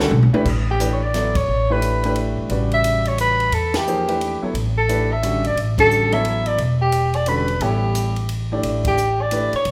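A swinging 3/4 pulse at 176 BPM drives this spiritual, open modal jazz fragment in A mixolydian. It opens with a drum fill from a compact cocktail kit whose dry, dark cymbals, high-tuned snare and tight kick sit low in the mix, while a woody, thumpy pizzicato upright bass on gut strings stands up front and a baby grand piano accompanies over an A9sus4 chord. At 0.7 s a mellow soprano saxophone enters as the solo voice, its vibrato-laced melody up front yet distant and roomy, as the band punctuates with accents inside a moderate recital hall reverb that lends a church-like glow.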